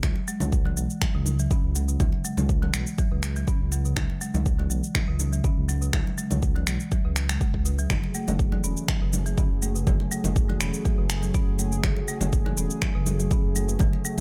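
Warm and spiritual, this afro house excerpt rides a deep, up-front electronic kick, tape-warm finger snaps and shaker, and bright, hard-handed congas in the background. A dark, rumbling detuned saw bass and woody, rustic marimba arpeggios both pump against the kick, the marimba trailed by digital delay, and a smooth chorused analog pad joins them at 7.9 seconds on an F#madd9 chord.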